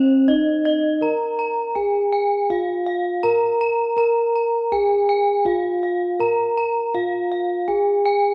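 A bronze metallophone carries the melody up front, struck with padded disc mallets for a mellow, soft, close-miked tone that sounds dry and full. Above it, a second bronze metallophone plays arpeggios in the octave higher, its horn mallet drawing out a bright, airy ring, while paired tuning gives it shimmering beats. This short gamelan passage, cut from a longer piece, moves in a straight, unhurried pulse and feels serene and ceremonial. Both instruments play together throughout its 8.3 seconds, set in a moderate concert hall reverb. The production leans dark, letting the ringing metal bloom with a gentle glow rather than an edge.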